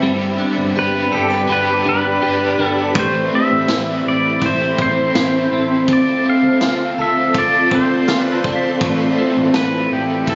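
A hazy, ethereal dream pop passage at 82 BPM in D dorian opens with a clean electric guitar's up-front arpeggios soaked in chorus and delay, an overdriven, double-tracked guitar with harmonic tremolo, a shimmering granular pad, a dark foam-muted bass and a faint bell-like celesta, all moving through G, Amadd9 and Dm7. At 0.8 seconds a fingerpicked pedal steel takes the melody with slide and volume swells under delay, and a vintage kit with punchy kick, medium-tuned snare, dark ride and tambourine joins at 3.0 seconds. A lush hall reverb wraps the mix, while the phone-in-the-room capture and compression leave a muffled, rolled-off top end.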